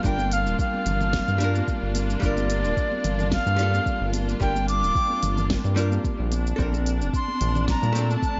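An echo-heavy, softly reverberant mix with a dusky, rolled-off top frames this wistful sunset chillout excerpt in G minor, moving at 110 BPM in 4/4 with a light sixteenth-note swing. A round, detuned analog bass sits up front beneath a soft electronic kick and a smooth R&B kit of fat snare, smooth hi-hat, shaker and congas, while a separate compressed, saturated conga part sits in the background and a rich bowed string section holds even, lightly vibrato chords. A dark, clean hollow-body archtop guitar with analog delay accompanies, and a pure, reedy wooden flute, also through analog delay, carries the melody from 0.1 seconds, as the harmony shifts from Gm7 to Bbmaj9 at 6.3 seconds.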